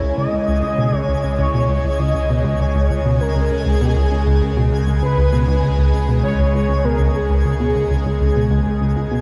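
A straight 4/4 pulse at 99 BPM drives this 9.2-second excerpt of ambient, sequencer-driven space music, cosmic and mysterious in mood and resting on a single C#m7 chord. The plucky analog bass is the most forward part, playing a punchy, funky riff between C#2 and B2. Its sawtooth, pulse-wave and ring-modulated tones take on a quick filter pluck and pass through subtle chorus and tape echo, all above a round sine sub bass held on C#2. Higher up, an evolving wavetable pad sustains morphing, detuned chords from C#3 to G#4 through phaser and shimmer reverb. Over it, a smooth, expressive synth lead carries the melody between G#4 and D#5 with vibrato, ensemble chorus, shimmer reverb and tape echo. A faint granular texture adds sparkling, octave-up shimmer on G#5, and the whole production is dark and warm, bathed in a huge ambient reverb with an 8.8-second decay.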